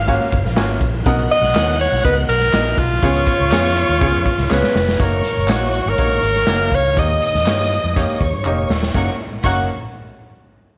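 A bright, forceful alto saxophone carries the melody up front from 1.3 seconds, its jazz-style phrasing punchy and full of vibrato, in this uplifting, joyful slice of uptempo 1960s-style soul at 122 BPM in F# major. Beneath it, a raw garage drum kit with a punchy kick and medium-tuned snare sounds smooth and rolled-off in a stone room, with fills at 4.5 and 8.4 seconds leading into new sections. A vintage foam-muted electric bass adds a round, amped low end, while a clear grand piano with short sustain fills out the accompaniment. A lush, bowed string section supplies an expressive second line, and tambourine, tube shaker and group handclaps sit close and dry in the background. The chords move from F#maj7 through Bmaj7 and C#7 to F#6 and D#7, and light reverb lends the studio a gentle sense of space in this excerpt from a longer piece.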